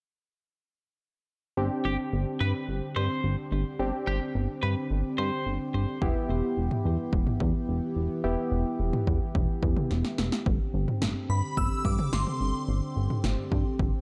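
A glossy, chorused synth bass sits up front from 1.6 seconds in this nostalgic, bright synth-pop excerpt at 108 BPM in G major, under round, detuned sawtooth keys with chorus and a retro pulse-width pad holding sustained chords through Gsus4 and Em. A clean, twangy twelve-string electric guitar with delay adds a brief second line early on, and a punchy analog drum machine with kick, snare and toms arrives at 6.0 seconds, with a drum fill leading into the next section. A shimmering FM bell carrying ensemble chorus, phaser and delay then plays a short, dreamy melody near 11.3 seconds, set in light reverb and a dark, warm production.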